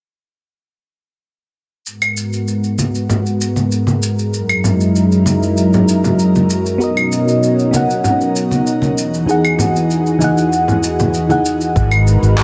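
Relaxed and warm, this sunset chillout excerpt in G# minor moves at 97 BPM in a straight 4/4. A thick, warbling, detuned unison pad carries sustained chords with chorus and a filter sweep from 1.9 seconds, joined by tape-colored electronic shaker, claves and handclaps and by bright, band-limited congas played with hard hands. A soft, round FM electric piano enters at 6.8 seconds, dressed in phaser, tape echo and shimmer reverb, before a dark, up-front fretless bass and a deep electronic kick arrive at 11.8 seconds, all set in a lush hall reverb.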